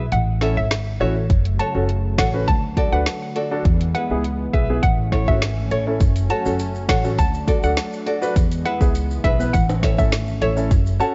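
Fingerpicked nylon-string guitar arpeggios and a woody pizzicato upright bass open this sultry, tough dancehall excerpt, soon joined by a hollow, detuned square-wave pluck melody with chorus and tape echo, an intimate grand piano with audible action noise, and an electronic afro-pop kit of finger snaps, metallic hats, rim clicks and a woody snare whose deep kick holds off until 1.3 seconds. From that point a smooth sawtooth pad adds sustained chords with chorus and sidechain pumping, and at 6.0 seconds distant, ringing maracas and timbales enter. The whole recording sits in a small room with light reverb and carries the worn, warbling pitch drift and dulled top of old cassette tape.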